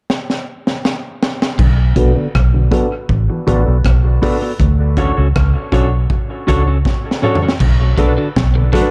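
A straight 4/4 pulse at 80 BPM drives this deep, heavy dub reggae excerpt in B minor, opening with a drum fill on a crunchy, saturated breakbeat kit with a punchy kick and high-tuned snare, joined at 1.6 s by a round, foam-muted bass sitting up front. Over Bm7 and Dmaj7, a clean fingered guitar, open-sounding baby grand piano stabs and slightly broken-up picked guitar arpeggios in the background pass through low-pass filtering and dub echo, while a filter sweep runs through the middle stretch. A very quiet tonewheel organ with key click and slow rotary vibrato enters at 7.8 s, set in a lightly reverberant, echo-heavy mix.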